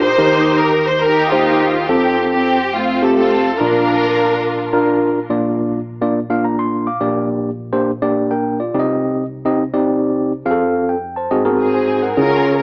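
This soulful, hopeful gospel excerpt opens with a bowed studio string section carrying the melody over a tine electric piano, at a swung 140 BPM in 4/4 and Bb major. The strings sound lush and focused, with vibrato and an analog delay trailing their line. The electric piano plays accompaniment from the first second to the last, its warm, clean tone heard through built-in speakers and colored by cassette tape. The strings drop out at 4.9 seconds, leaving the electric piano alone as the harmony moves through Gm/Bb, Cm and F, before the strings return at 11.6 seconds over an Ab7 chord. A light reverb and a home-cassette, small-speaker quality give the whole recording an intimate, lo-fi character.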